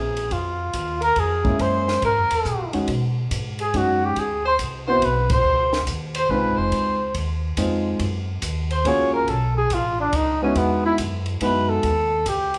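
Swinging in 3/4 at 141 BPM, this short cut of small-group jazz in Db major has a warm mood, with a veiled, breathy cup-muted trumpet up front on the melody over an alto saxophone second line with vibrato, a woody, growly pizzicato upright bass, and a dry cocktail drum kit with dark cymbals, a high-tuned snare and a punchy kick, while a worn, vintage grand piano accompanies from 1.4 to 11.8 seconds, the band hits an accent at 5.2 seconds, and the live-in-one-room sound sits in a moderate, large studio reverb.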